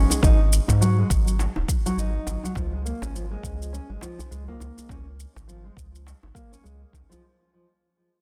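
Dense, heavily limited and lightly reverberant in a small room, this short organic downtempo excerpt fades out across its full 7.2 seconds at a swung 103 BPM in 4/4, with a peaceful, warm mood. A dark, thumb-plucked nylon-string guitar plays classical-sounding arpeggios through a digital delay, over a round, sine-like analog bass that sits deep and up front. A produced shaker touched with soft clipping and a saturated djembe played with soft hands fill out the groove from 0.1 seconds, joined at 0.2 seconds by an electronic kick drum with a tape-warm, layered thump.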